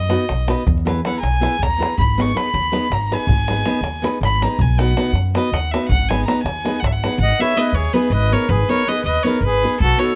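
A clear, lightly vibrato bowed fiddle opens this fiery, virtuosic Balkan wedding-band piece, soloing up front over a woody, growly pizzicato upright bass, a bright fingerpicked nylon-string guitar with audible finger squeak, and a deep davul in 7/8 at 322 BPM in G# minor. At 7.2 seconds the davul drops away and a reedy single-reed accordion enters with a second line beneath the fiddle. The close, dry recording keeps every detail of the playing crisp and immediate in this short cut from a longer piece.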